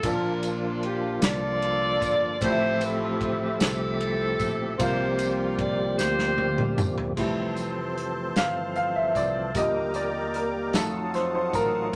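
In a straight 6/8 at 50 BPM, this jubilant, uplifting slow gospel passage in F major, cut from a longer piece, puts a distant, roomy jazz-style saxophone section on the melody until 7.1 s over a worn, present baby grand piano, a fat tonewheel organ holding sustained chords with key click, light overdrive, chorus vibrato and a slow rotary speaker, a dark, round fingered electric bass, an airy, polished acoustic drum kit with a punchy kick and a fill from 6.0 s, and a jingly tambourine in the background; at 7.2 s the piano takes a solo while a reedy, shimmering musette accordion adds close, dry sustained chords, all set in a moderate studio room.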